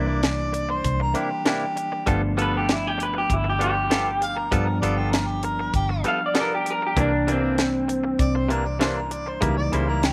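Gritty and swaggering, this straight-eighth soul blues excerpt rides a tight funk kit with a high-tuned snare, which enters at 0.2 s, over a dark, round, foam-muted vintage bass, while a tine electric piano heard through its built-in speakers provides accompaniment and a twangy, bright, direct-recorded clean guitar plays stabs over C9 and G9 chords. An overdriven, distant harmonica adds a jazz-style second line with light vibrato and scooped notes. From 2.4 to 8.5 s, a slightly broken-up, lo-fi guitar through a small old amp sits up front with the melody, all within a small room's light reverb.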